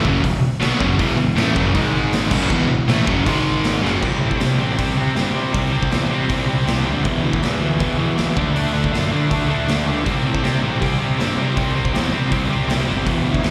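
Rebellious and upbeat, this punk rock clip from a longer piece charges ahead at 159 BPM in a straight 4/4, centred on E major. An up-front cranked stack guitar hammers out a bright, overdriven picked riff throughout, joined for the opening stretch by a distorted electric guitar and a thick, double-tracked fuzz guitar, both set in the background with slapback echo. A raw garage drum kit sits up front with a punchy kick, a medium-tuned snare, hi-hat and crash, its sound gritty and saturated with a rolled-off top in a pumping stone room. A drum fill at 3.8 seconds leads into a new section at 4.0 seconds, where the two background guitars drop out and the power-chord movement shifts through C5, E5 and D5. Underneath, a growly fuzz-driven picked bass adds grit, and the whole thing has the feel of a live gig heard through the venue's PA with a hall's reverb around it.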